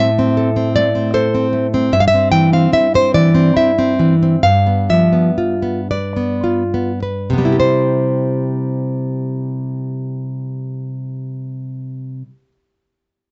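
In a flexible, rubato 12/8 lilt that slows through the opening 7.6 seconds, this lyrical classical excerpt features a single fingerpicked nylon-string guitar playing accompaniment up front in the mix. Its acoustic tone is warm, moving from A minor through C over G and G7 before settling on C at 7.6 seconds. Light reverb and a dark, warm production surround the guitar until it stops at 12.5 seconds.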